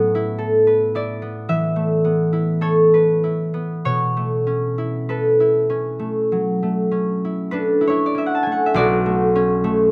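A solo concert harp opens this short classical passage, its fingerpicked strings ringing close and detailed in a light reverb. The mood is mysterious and wistful, with a slow, rubato pulse of around 47-57 BPM in 4/4 and a key of B minor, tuned to A4 = 438 Hz. The harp spans its low B1 up to A5, moving from an Aadd9 harmony at the start to a Bm11 at 3.8 s. The acoustic tone sits warm and up front, so each plucked note carries its full resonance. A new section arrives at 8.8 s, just before this fragment of a longer piece is cut off.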